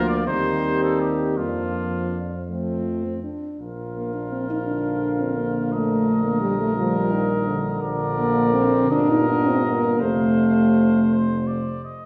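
In a rubato 6/8, this warm, noble classical brass quintet passage, cut from a longer piece, sets the trumpet on the melody while the flugelhorn sings a distant, roomy second line. A dark, close-miked French horn stands forward in the accompaniment beside a mellow, smooth-topped trombone, both with light vibrato, and a soft-attacked tuba, also with light vibrato, anchors the bass from further back. The ensemble sounds through a reverberant recital hall, with the trumpet holding on until 12.1 seconds.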